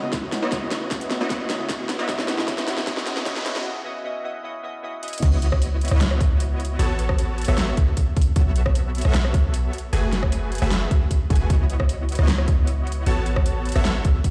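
Glassy digital keys with chorus and an airy, breathy pad open this dreamy, emotional future bass excerpt in C# minor at 153 BPM in a half-time feel, as a bright, detuned supersaw stab riff pumps through a build-up with a very quiet riser from 1.8 s and a drum fill, then at 5.2 s a deep, boomy 808-style bass joins the hard-clipped kick and a dubstep kit with a huge snare and metallic hats for the drop, moving through C#m11, A69, B9sus4 and F#m11 in a large studio reverb.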